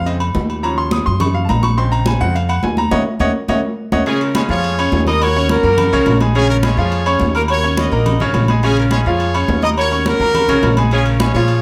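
A bright baby grand piano opens this fiery, danceable salsa excerpt in Bb minor at 210 BPM, its rootless Bbm7 moving to Ebm7 with audible action noise over a woody, thumpy pizzicato upright bass, while distant, high-tuned congas and ringing agogo bells and timbales join almost at once. A band accent at 2.9 seconds and a drum fill lead into a punchy horn section with light vibrato, which takes the melody at 4.1 seconds and sits up front with the piano and bass. A moderate large-studio reverb surrounds the dance-ready groove.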